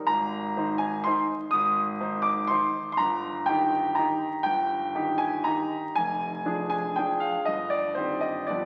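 A clear concert grand piano plays alone in this bittersweet, wistful classical waltz, sitting up front with a deep bass and an open tone as it moves through a rubato 3/4 at around 122 BPM with uneven beats. The short fragment, cut from a longer piece, drifts from Ab toward Eb/G, then Ddim/F and Cm/G by 7.5 seconds. A wet concert hall reverb surrounds the playing, and the crackle of a very old 78 rpm record lends the sound an aged, faded patina.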